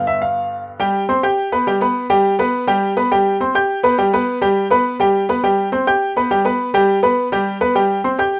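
A rough home demo with light reverb carries this short, festive, danceable Latin clip at 207 BPM in straight 4/4, where a bright, worn baby grand piano plays alone from G2 to G6, up front and intimate with audible action noise and short sustain, alternating between G and C5 for its 8.4 seconds.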